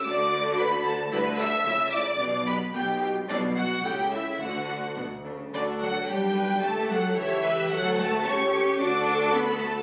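A lush violin section carries the melody up front in this quick, cheerful classical-period movement for string orchestra in D major, its smooth, even vibrato lending grace to a rubato 2/4 feel at 110 BPM. A second violin line with a soft attack and expressive warmth joins at 0.1 seconds, while the violas add portamento-tinged accompaniment and the cellos and distant double basses supply a rich, bowed foundation. The short passage, cut from a longer piece, moves through two statements of the same theme over cadences that return home to D, heard through light reverb and the dull top of a phone recording made in the room.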